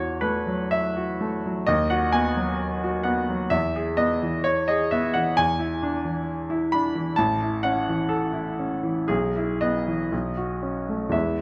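A clear, present grand piano plays alone up front in this lyrical, hopeful romantic character piece in E major, tuned to A4 = 436 Hz and cut from a longer work, moving in a rubato 2/4 at about 56-67 BPM across a range from A1 to B5, its close, detailed sound set in a moderate recital hall reverb as the harmony passes from F#m7/E through E7 and A to a closing B9 at 10.1 seconds.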